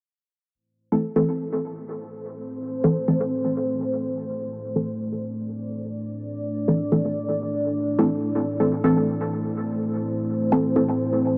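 A 125 BPM techno groove in 4/4 with a 56% swing on the 16ths sits in A minor on a single Am chord, setting a nocturnal, deep mood in this short cut from a longer piece. A filtered dub chord stab, muted and detuned with a sawtooth bite, enters at 0.9 seconds with chorus, phaser and dub echo, while a dark, moody ambient pad of unison saws, sine and sub octave layers arrives at 2.2 seconds with slow attack, chorus and its own built-in reverb, and both parts carry a filter sweep throughout. The gritty hardware and cassette tape character sits inside a huge ambient reverb with a 7.2-second tail, both parts up front in the mix.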